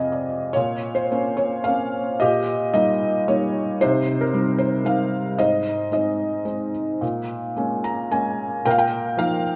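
Classical solo piano in Bb dorian, bittersweet and brooding, moving in 3/4 at about 111 BPM with uneven, rubato beats. A felt-muted upright piano plays alone from F2 to Bb5, its soft, mellow tone close and intimate, with thin felt and audible action noise. A brief fill opens the passage before the main section arrives at 0.6 seconds, and the harmony passes through chords such as Bbmadd9, Cm, Ab and Bbm7, all set in a moderate church reverb.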